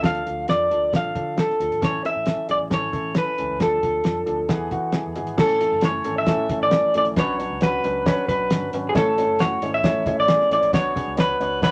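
Uplifting and warm, this short cut from a longer uptempo 1960s-style soul piece puts a slightly broken-up, lo-fi electric guitar up front with the melody, played through a small old amp. A dark, mellow baby grand with audible action noise supplies the accompaniment, a foam-muted, round fingered bass sits low underneath, and a cloth-damped, thuddy drum kit with a fat snare, tight kick and dark cymbals keeps the beat. The chords move between Dm, A and E before a second passage at 5.4 seconds built on A and Bmadd9, the whole band heard in a moderate club reverb.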